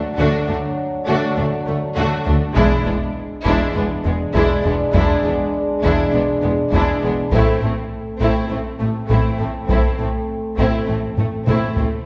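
Mellow, distant French horns open this heroic, epic orchestral film-score excerpt with sustained chords moving from D to E7 to Am, as a close, lush symphonic violin section carries the expressive melody over a distant studio violin second line, violas with vibrato and portamento, and rich cellos and double basses holding the bass, while taiko drums struck with heavy sticks enter at 2.6 s and play a fill from 11.2 s, the ensemble set in a wet concert-hall reverb.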